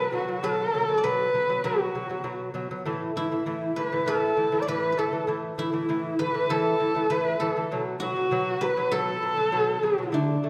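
Mongolian folk with a vast, galloping mood, heard in a short section cut from a longer piece, where a husky horsehead fiddle carries the melody up front with vibrato, portamento and a soft, expressive bowed attack that still sounds somewhat distant. A delicate fingerpicked lute with gut double strings plays arpeggios in the low register, while a silvery, ringing guzheng played with fingerpicks adds a second line from the background. All three play throughout the 10.5 seconds over shifting power chords, bathed in a recital hall's reverb with a 1.6-second decay.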